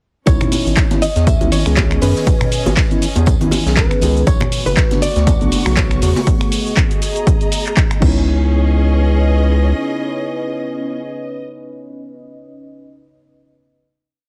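A hypnotic, late-night deep house piece opens with the full groove at once: a punchy electronic kick drives a four-on-the-floor pulse up front, a round, deep analog bass plays a syncopated riff, and a mellow tine electric piano repeats a chord riff, one shape moved in parallel, with tape echo and sidechain pumping. A punchy analog drum machine supplies programmed hats, handclaps, finger snaps, cabasa and crash, while saturated congas and bongos tap syncopated patterns in the background and a very quiet acoustic kit adds a looped, edited breakbeat of snare, hi-hat and tambourine. Above them, a dark, clean hollow-body jazz guitar picks short call-phrase motifs through tape echo, and a lush symphonic string section, bowed with vibrato and a soft attack, moves through slowly shifting minor ninth chords. At 4.6 seconds a moody, warbling ambient pad with chorus, built-in reverb and vintage 12-bit sampler grit fades in slowly alongside the strings, and the guitar drops out at 6.2 seconds. 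From 8.3 seconds the groove thins into a final sustained note carried by the strings, the pad and the electric piano, all under a heavily compressed, radio-like sound in a small room.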